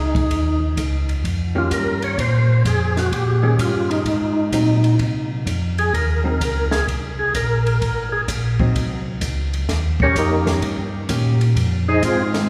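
Set in a church-like hall with a long, wet reverb of 3.1 seconds, this short soul jazz organ trio passage from a longer piece has a swinging, greasy feel at 128 BPM in 4/4, with a firm swing on the eighth notes. An up-front, fat tonewheel organ takes the solo melody from the start, lightly overdriven with percussive second-harmonic attack, key click, chorus vibrato and a slow rotary speaker. Underneath, a second tonewheel organ carries the bass line, round, mellow and clean, also turning through a slow rotary speaker. A compact cocktail drum kit enters at 0.1 seconds, dry and acoustic with dark cymbals, a high-tuned snare, a punchy kick, hi-hat and ride. At 1.6 seconds a dark, compressed hollow-body electric guitar joins with fingered accompaniment as the harmony moves mainly around Eb7 and Ab7, touching Bb5 and closing toward Fm7.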